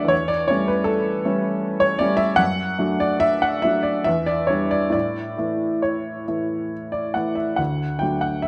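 An intimate, woody upright piano, slightly detuned and tuned to A4 = 441 Hz, with its action noise audible up front, plays a nostalgic, serene Romantic nocturne in 3/4 at a rubato 66-80 BPM, moving from A7/E through D/F#, Em7 and A to D across 8.5 seconds of a longer piece, ranging from D2 to G5 in moderate recital-hall reverb captured by close, detailed microphones.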